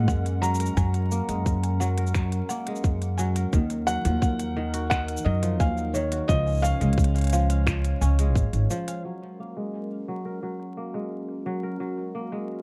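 A felt-muted upright piano leads this folktronica excerpt at 87 BPM in 4/4 with a straight feel in Gb major, its soft, intimate melody carrying audible action noise, vintage 12-bit sampler grit and delay. Beneath it, a warbly tape-like pad holds detuned, nostalgic chords with chorus and built-in reverb. A kora fingerpicks ringing, crisp arpeggios through a low-pass filter and delay, while a woody pizzicato upright bass sits up front. In the background, a buzzing marimba struck with hard mallets adds a dry, bright second line with tape echo, as a tight electronic kick and an organic electronic kit of finger snaps, hi-hat and shaker, both re-recorded in a large room, keep a pastoral, delicate pulse. The chords move from Gbadd9 through Ebmadd9 and Db before returning to Gbadd9 at 9.0 seconds, by which point piano, bass, marimba and kick have dropped away and a filter sweep on the kora begins. 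The closing moments leave the pad, the kora and the low-pass-filtered snaps, hats and shaker over dark studio ambience and vinyl crackle.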